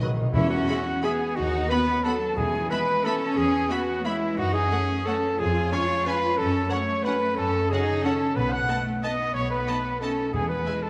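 A lush, reverberant recital-hall sound frames this festive, elegant orchestral ballroom waltz, cut from a longer piece, with a rubato lilt and uneven beats in three. A soft-attack violin section carries the melody with expressive vibrato while a dark, present clarinet and an airy silver flute in the background add second lines, a clear trumpet punctuates with stabs, a faint violin section adds a smooth second line, and a tight, very quiet French horn section holds sustained chords. Woody violas, focused cellos and double basses, and a ringing harp playing arpeggios fill out the texture, while round soft-mallet timpani open with a brief fill and return from 8.4 seconds as the harmony moves to a dominant seventh before resolving home.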